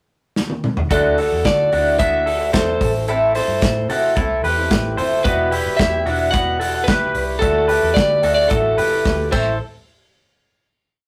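A loose indie drum kit opens with a fill at 0.4 seconds and settles into a dance-floor beat with off-beat open hats at 110 BPM, its tight kick and medium-tuned snare up front in a small, pumping room. This restless, bittersweet piece of jangly indie pop moves through Dadd9, Am and Emadd9 in a verse from 0.9 seconds, where a lightly driven lead guitar plays bright, motif-based call phrases over a twangy, up-front electric guitar figure doubled in thirds through a small old amp, a shimmering, boxy fingerpicked twelve-string acoustic in open chord shapes, and a dark, foam-muted bass line. Moderate reverb and the rough rehearsal-room sound with its saturation give the whole piece a lived-in feel before a final hit at 9.6 seconds.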